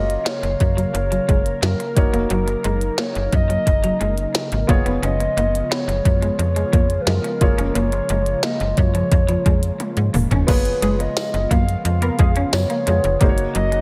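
Set at 88 BPM in a straight 4/4, this excerpt of romantic, glossy 1980s-style pop rides on a glitchy electronic drum kit that comes in at 0.1 seconds, with a deep kick, tiny snare and clicky hats pushed up front under gated reverb, and a drum fill at 9.8 seconds. A snappy, metallic FM bass with a slap-like attack sits just as forward, while a concert grand piano adds intimate accompaniment with audible action noise and short sustain. A shimmering pulse-width pad holds mellow, chorused chords, and a twangy electric guitar at the edge of break-up picks a riff through analog chorus. Over this, a hollow, woody synth lead, soft and clarinet-like with vibrato, carries the melody through chorus and delay. At 10.5 seconds the harmony moves onto an F# bass, bringing brief punchy stabs from a dark, detuned polysynth in the background, and a very quiet, jingly tambourine joins for a moment under light reverb.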